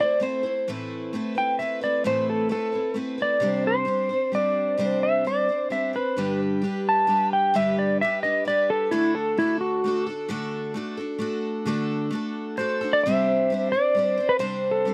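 In a straight 3/4 at 131 BPM, this dusty, reflective rock excerpt in A dorian moves through Am, Amadd9, Csus2, G and D before settling back on Csus2 near the close. A picked twelve-string acoustic guitar carries the accompaniment from start to finish, its fresh strings giving a bright, shimmering, octave-doubled sound with audible finger squeak, sitting up front between G2 and C5. Over it, a clean lap steel guitar takes the melody from E4 to A5, electric and dark in tone, fingered with slide and volume swells, also placed up front in the mix. The slide guitar solo runs from 0.7 to 11.7 seconds, though the lap steel drops out at 10.1 seconds and returns at 12.6 seconds for the final stretch. The recording is dry and close, with little reverb, in the manner of a 1970s-style studio session.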